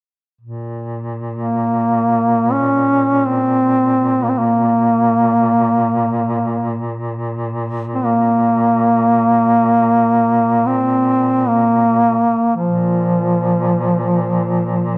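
Set in a moderate recital hall reverb, this fragment of a mournful, longing Caucasian folk lament unfolds in free time in Bb minor, tuned to A4 = 438 Hz. A warm duduk drone on Bb2 sounds from 0.4 seconds, distant and roomy with vibrato and scooped notes. At 1.4 seconds a mellow solo duduk enters up front, carrying the melody between F3 and Db4 with a soft attack, vibrato and scooped notes in a folk style.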